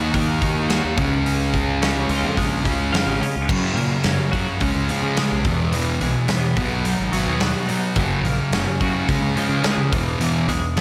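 Cathartic and bittersweet, this 107 BPM quiet-loud alternative rock excerpt in F# major pairs an up-front, dark, distorted fuzz guitar riff with a round, overdriven fingered bass and a punchy, mid-forward big rock drum kit entering at 0.1 s, while a bright, twangy twelve-string electric guitar plays clean arpeggios in the background through tremolo and digital delay, all set in a big arena sound with moderate scoring-stage reverb as the chords move from D#m and C# into F#, C#, E and B at 3.5 s.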